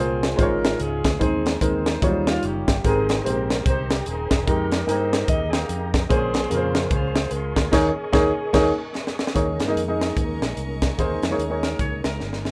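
A rough home demo with light reverb captures an uplifting, soulful uptempo gospel excerpt, where a dark, vintage saxophone section carries the melody over an intimate grand piano with audible action noise, a round, punchy fingered electric bass and a crisp, up-front fusion drum kit in a pumping small room, while a soft tonewheel organ with slow rotary speaker enters at 2.8 seconds in the background, a floating chamber string section arrives at 9.3 seconds and a twangy, clean electric guitar with lush chorus adds a second line from 11.6 seconds.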